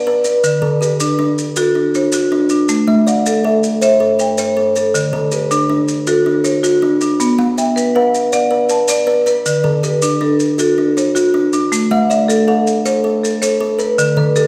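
A bright, woody marimba struck with medium hard mallets sits up front, spinning rippling arpeggios in 12/8 alongside a close-miked kalimba whose hollow, ringing thumbnail plucks add a full, intimate glow to this hypnotic, mbira-style interlocking cycle in the southern African traditional style. Grainy, mellow maracas join at 0.2 seconds, set further back, while the harmony circles between D, Am and Bm before a new section begins at 11.7 seconds. A moderate recital-hall reverb gives the whole cut, taken from a longer piece, a spacious church-like air.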